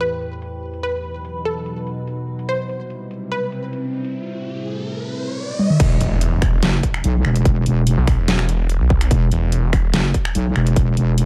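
Heavy wobble dubstep in a half-time feel, this chaotic, menacing excerpt opens with a bright, detuned unison pluck carrying the melody through a digital delay over an evolving wavetable pad whose morphing, mellow chords pump against the beat, soaked in chorus and reverb. A layered, overdriven dubstep drum kit runs throughout, its deep snare sitting up front alongside hi-hat, finger snaps, toms and crash cymbal, all muffled by low-pass filtering. An electronic riser and impact build from 3.6 seconds into a drum fill that lands the drop at 5.8 seconds. There a heavy, resonant wobble bass with saturated chorus takes over the low end, joined by a punchy, overdriven electronic kick drum. A snarling distorted saw bass growls up front beside it, aggressive and detuned with a moving notch, until it cuts out at 9.9 seconds, all within a dry, close mix.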